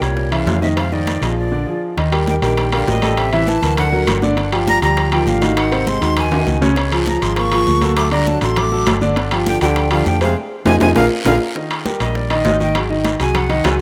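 An up-front concert grand piano with a deep, natural bass carries the accompaniment in this danceable, sophisticated Afro-Cuban jazz excerpt, alongside a punchy, dark hollow-body electric bass. A breathy, bright metal flute with vibrato, crisp chiff and slapback echo plays the melody, while a mellow trombone with light vibrato holds a second line in the background until 11.3 seconds. Thin high-tuned congas, ringing metal-shell timbales, a raspy guiro and very quiet round bongos entering at 0.2 seconds drive the rhythm, with a brief break, drum fills and a band accent from 10.4 seconds, all in a rough home demo mix with light studio reverb.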